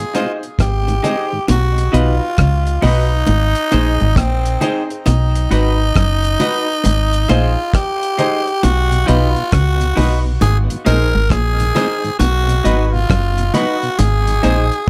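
A growling tenor saxophone leads this slow roots reggae excerpt at 67 BPM, its raspy, close-miked tone carrying the melody up front with vibrato and a touch of tape echo, lending a warm, uplifting mood to the swung sixteenth-note feel. Beneath it, a deep dub fingered electric bass sits round and punchy, entering at 0.6 seconds, while a cloth-damped drum kit supplies a dry, dark pulse of tight kick, hi-hat and rim click, joined by low-tuned bongos in the background. Two clean, picked semi-hollow electric guitars fill the middle: one plays a higher accompaniment part with tape echo, and the other takes up a low riff from 1.5 seconds. A woody, slightly detuned upright piano adds stabs with audible action noise, and a mellow tonewheel organ with key click and slow rotary speaker appears briefly at the start before returning at 8.9 seconds. The harmony rocks between Ab and B, and light reverb gives the whole band a relaxed sense of space.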